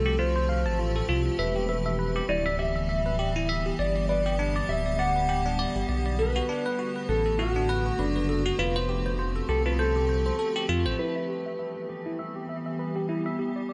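A mellow, fingered electric guitar melody with digital delay leads this cerebral, intricate IDM piece at 100 BPM in E minor with a light 16th-note swing, sounding together from the start with an icy, crystalline chorused pad, a deep, rumbling detuned saw bass up front, and bell-like tine electric piano arpeggios through phaser and tape echo, all set in a lush hall reverb until the bass stops at 10.9 s and filter sweeps shape the pad and electric piano from 11.0 s.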